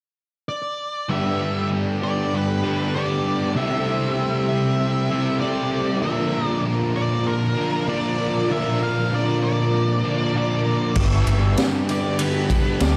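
Wistful and hazy, this short cut from a longer shoegaze and dream pop rock piece moves at 97 BPM in a straight 4/4. A dark octave-fuzz lead guitar with slapback echo carries the melody from 0.5 seconds, and at 1.1 seconds a lush string machine with phaser and ensemble chorus sustains mellow chords in the background through Gadd9, C6 and Bbmaj7. Alongside it, a biting overdriven guitar with analog chorus and an up-front crunchy overdriven guitar with reverse reverb play picked riffs. At 11.0 seconds a round, foam-muted fingered bass and a gritty, punchy garage drum kit with a high-tuned snare arrive, joined by a faint, distant tambourine, all within a dark, small-room production.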